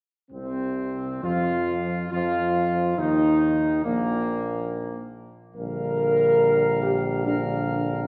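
In a stately triple metre, this solemn, majestic classical brass passage has a mellow, distant trumpet section carrying a loose melody, a dark French horn section with light vibrato and a smooth top holding sustained chords, a soft-attack trombone section adding chords in the background, and a warm, present tuba anchoring the bass, all set in a wet church reverb.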